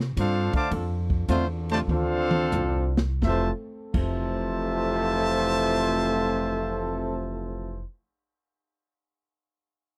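Joyful and swinging, this big band jazz fragment in F major moves at 84-113 BPM with a lilting swing feel. It slows through its opening 3.2 seconds, where a drum fill arrives at 1.9 seconds before the kit, with its dark cymbals and punchy kick, drops out at 4.2 seconds. Over a woody, thumpy upright bass played up front, a clear, tight trumpet section carries the melody while a trombone section with light vibrato supplies a second line, and a loose, very quiet, warm trombone section holds sustained chords, all captured in a dry, close 1970s-style studio sound.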